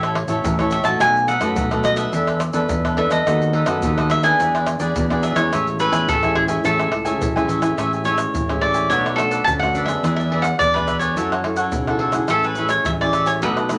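A crisp, up-front picked cavaquinho carries the playful, festive melody of this samba and choro excerpt from the very start, over a second, brighter cavaquinho and a deep, classical-toned fingerpicked nylon-string guitar picking out A major changes at a straight 106 BPM in 4/4. A growling, overdriven fingered electric bass sits underneath, while egg shaker, pandeiro, tamborim and a tight surdo are played close and dry with hard hands. A club reverb adds a wet room around the ensemble, and a second section arrives at 7.8 seconds, moving through Bm7, E7 and F#m7 before settling on Amaj7.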